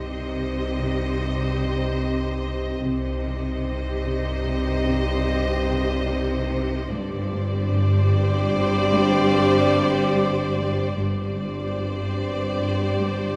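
Set in a slow, straight 5/4 at 74 BPM in C minor, this cinematic passage, cut from a longer piece, carries an eerie, mysterious mood, moving from Cm to Gsus4 at 6.9 seconds. A bright, intense violin section carries the melody between D5 and Eb5, while a second violin section holds a smooth, even line on C5, both bowed with vibrato and sounding distant. Beneath them, a viola section sits in the background on G4, expressive with portamento, as a mellow French horn section and a clear, soft-attacked trombone section sustain chords in a classical style. Two cello sections play throughout, one focused and close on a riff from G2 to C4 until 13.2 seconds, the other very quiet on the bass. A lush double bass section also plays the bass, from G1 to C2. The whole ensemble is heard from further back in a wet recital hall reverb with a 1.7-second decay.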